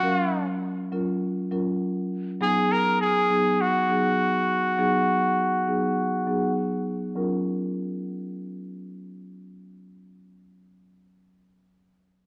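Afrobeats at 101 BPM in 4/4 with a light 16th-note swing: a breezy, joyful passage in F# major, cut from a longer piece, that moves from F#maj7 to G#m7 as a filter sweep runs through its first 7.2 seconds. A bright, punchy solo trumpet carries the pop-style melody up front with scooped notes and a vintage, low-pass-filtered tone touched by tape echo, dropping out at 6.6 seconds. Beneath it, a close-miked, dry and full marimba played with medium mallets keeps up the accompaniment through a filtered cassette-tape haze until 11.0 seconds, all set in a moderate spring reverb with the feel of a home cassette recording.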